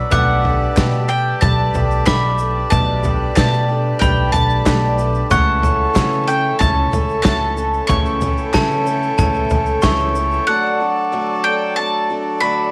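Nostalgic and anthemic, this indie folk excerpt at 93 BPM in D major puts a bright, double-strung bowl-back mandolin melody up front over a ringing, bell-like glockenspiel line, a reedy, breathing hand-pumped harmonium, a boxy picked ladder-braced acoustic guitar with old strings, a very quiet, brilliant upright piano, a woody, thumpy pizzicato upright bass on gut strings, and a loose indie drum kit with a tight kick and rolled-off top, joined by a grainy tube shaker in the background and faint, hollow group handclaps from 0.8 s, before the drums, percussion, glockenspiel, piano and bass fall away by 10.5 s to leave mandolin, guitar and harmonium on a D chord, the whole mix carrying light small-room reverb and vinyl crackle.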